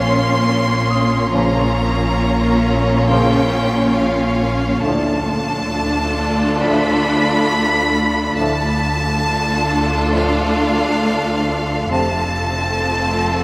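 Ominous and uneasy, this cinematic suspense cue unfolds in a wet cathedral reverb, with an intense, up-front chamber violin section carrying the melody over a rich, expressive second violin line, a lush symphonic viola accompaniment, and a bass foundation of smooth, distant cellos and focused double basses. A very quiet concert grand piano adds a clear texture with deep bass and long sustain. At 1.3 seconds, mellow, roomy French horns and tight trombones enter on very quiet sustained chords, holding until 12.2 seconds as the harmony moves from A#m through Dm to F.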